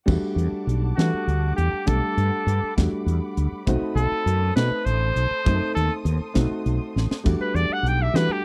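Slick and intense, this short cut from an electric jazz fusion piece in 6/8 moves from Em11 through B7b9 and back, with a clear, forceful trumpet entering at 1.0 s to take an up-front solo marked by light vibrato and scooped notes. Beneath it, a crisp fusion drum kit with a high-tuned snare and tight kick and a round, punchy fretless bass sit close in the mix, while a worn baby grand piano with audible action noise accompanies and a veiled, muted string section holds soft bowed chords in the background. The sound is dry and close, in a 1970s studio style, and the drums play a fill at 7.0 s.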